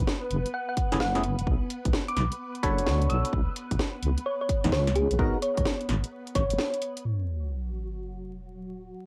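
Vinyl crackle and a homemade cassette sheen in light reverb frame this moody, soulful two-step UK garage cut, swung on a punchy, up-front electronic kick and a house kit with hi-hat and a cracking snare, both tape-warmed. A deep, dark wobble bass rides beneath a silky string machine pad with phaser and ensemble chorus that pumps against the beat. A round, tine-like thumb-piano pluck and hollow, percussive organ stabs, each carrying chorus and analog delay, move over minor-ninth chords and a dominant seventh. The drums fall away around 7.0 seconds, when an electronic sub drop and an impact arrive and a filter sweeps across the strings.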